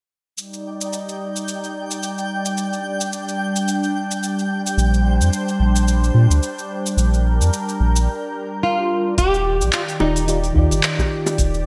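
Warm and blissful, this short sunset chillout cut from a longer piece opens with a lush, detuned unison pad with chorus and phaser over smooth R&B drums of cabasa, handclaps and hi-hat, while a twinkling granular texture sparkles above until a break at 8.1 seconds. A round, deep analog bass arrives at 4.8 seconds, and during the break a fingerpicked flamenco guitar with delay takes the melody, soon underpinned by a deep, tape-warm electronic kick, then joined by a mellow FM electric piano and tight, high-tuned bongos in the background. The bright 1980s-style digital production sits in a moderate hall reverb.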